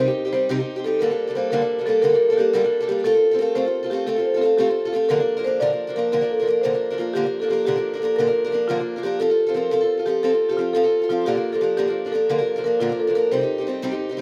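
In a straight 12/8 at 117 dotted-quarter beats per minute, this driving, wild Celtic folk fragment, cut from a longer piece and tuned to A4 = 442 Hz, moves from C minor through Gm(add9), F/A, B-flat and F before landing back on C minor. An up-front marimba with medium mallets carries the melody from F4 to D5 with a woody rosewood tone, while a picked acoustic archtop guitar accompanies underneath from G2 to Bb4, its sound boxy and flecked with finger squeak. Both play throughout the 14.2 seconds, set in a lush hall reverb with a rough, homespun demo mix.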